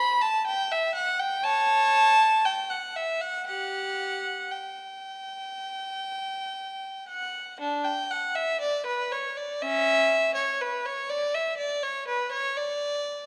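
Serene and dance-like, this excerpt from a baroque-style suite movement for unaccompanied violin moves at 60 BPM in 4/4 with a supple rubato feel, opening in G major and shifting to D major from 7.6 s. A single bowed violin sits up front with a rich, reedy gut-string tone, light vibrato and period-style phrasing, ranging from C#4 to B5 and tuned to A4 = 436 Hz. The wet reverb of a recital hall, lasting about 1.5 s, surrounds the instrument.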